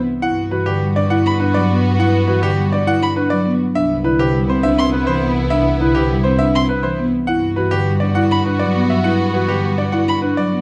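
Classical minimalist pattern music in G major at 102 BPM in 3/4, meditative yet urgent, in which a bright grand piano with audible action noise and long sustain carries the melody over a padauk-barred marimba with soft mallets in the accompaniment, a dry, rustic folk marimba spinning woody arpeggios, a single close, rich violin adding high bowed arpeggios from 1.3 seconds, a smooth symphonic violin section holding sustained chords, and a warm, expressive bowed double bass section underneath, all moving between Gmaj7 and Cmaj7 in a close, detailed recital hall sound with moderate reverb.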